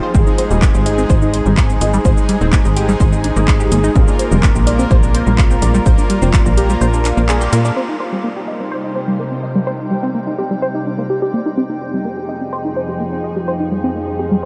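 A punchy, tape-warm electronic kick drives this hypnotic melodic techno cut until 6.4 seconds, alongside a tight, up-front sawtooth sequencer bass with ring modulation, brassy detuned analog pad stabs with vibrato and analog delay, and a house kit of handclaps, warm hi-hats and shaker, all of which fall away at 7.7 seconds. A nasal, chorused arpeggiated synth with a moving notch and an evolving, morphing wavetable pad carry on to 14.5 seconds, gritty with 12-bit sampler texture, pumping against the sidechain and soaked in a huge, dreamy reverb.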